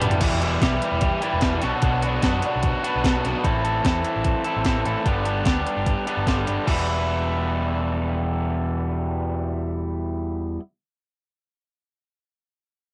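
A straight 4/4 pulse at 148 BPM drives this bittersweet, moody indie rock excerpt in E minor, opening on a drum fill from a crisp, up-front 8-bit drum machine with thumpy kick and overdriven cassette grit that plays until 6.8 s, while a bright, crunchy guitar riff and a round, picked electric bass carry the Em, Bm, Am, G progression through 10.6 s, and a biting background guitar riff, treated with ensemble chorus and tape echo, stops at 3.4 s, all heard in a small booth-like room on a home cassette recording.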